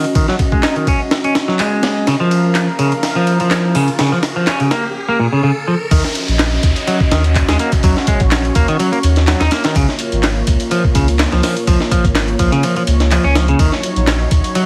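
A bright, clean semi-hollow electric guitar sits up front with a picked riff, its hollow-body tone roughened by tube saturation and trailed by dub echo, while a filter sweeps across it through the opening build-up. This is a swaggering, funky breakbeat excerpt at 125 BPM in Eb minor, with a light 16th-note swing and harmony moving between Ebm7 and Db6. A gritty, pitched-up sampler-style break kit drives it with a thumpy kick, high-tuned snare, hi-hat and ride, compressed and tape-colored. From 0.6 seconds a punchy analog drum machine adds handclaps and hi-hat with a small-room character, and a drum fill marks the build-up as an electronic riser and downlifter drift in the background. Underneath, a moody, detuned sawtooth pad with a sub octave holds slow-attack chords, thickened by chorus and pumping against the sidechain. At the drop at 5.9 seconds a deep, thick sub bass enters up front with a fast attack, all set in a moderate studio reverb with a heavily compressed radio sound and vinyl crackle.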